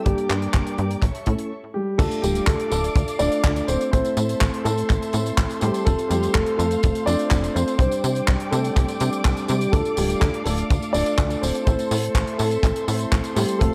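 A dark, mellow grand piano carries the melody with delay over veiled, muted strings with vintage 12-bit sampler grit and bright, bell-like electric piano stabs, as a punchy, nasal sequencer bass, a dry, tight kick and a polished funk kit of crash cymbal, handclaps, hi-hat and tambourine with gated reverb drive in at 0.1 seconds to shape this melodramatic, bittersweet italo disco excerpt at 124 BPM in D minor, which passes a brief break at 1.5 seconds before settling into a Dm, Am, F, Csus2 progression.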